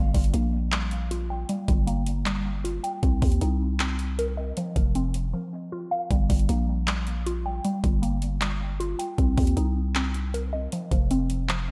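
Trap hip hop with an eerie, menacing half-time feel, built on woody, mallet-like synth pluck arpeggios carrying chorus, phaser and tape echo under a filter sweep, a growling, buzzy 808-style bass, and a trap kit with knocking kick, metallic hats and handclaps, with a brief break at 5.3 seconds, all set in light reverb within a short cut from a longer piece.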